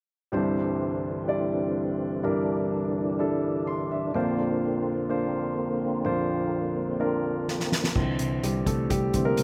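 A concert grand piano leads this anthemic, piano-driven pop fragment cut from a longer piece. It plays a warm accompaniment with deep bass, long sustain and a slapback echo, spanning Bb1 to C6 and adding a fill partway through. From 0.3 seconds a lightly overdriven tonewheel organ holds sustained chords between D3 and D4, with key click, third-harmonic percussion, chorus vibrato and a slow rotary speaker. At 126 BPM in a straight 4/4, the harmony in C mixolydian moves from Cadd9 to Bbadd9 and returns to Cadd9. A drum kit played with soft mallets enters at 7.5 seconds with a fill, bringing a fat snare, boomy kick, hi-hat and crash cymbal up front. At 8.0 seconds the piano takes a solo over a dark, round, foam-muted electric bass on C2, all in a dry outdoor sound.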